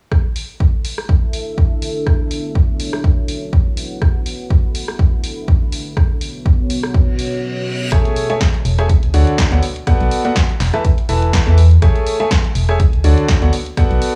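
Punchy analog electronic kick drum and drum-machine hi-hat, rim click and snare open this uplifting, joyful piano house excerpt at 123 BPM in A major with a swung sixteenth feel, soon joined by a deep, moody, detuned sawtooth pad with chorus, reverb and sidechain pumping over A, D, Bm7 and E chords. A reverse cymbal at 7.1 s leads into a brief stop, and at 7.9 s a clear, smooth, vintage grand piano riff with tape echo and a hollow, organ-like FM bass, dark and up front, both with sidechain pumping, bring richer Amaj7 and Dmaj7 harmony. The recording has a dry, gritty cassette character and a small room sound.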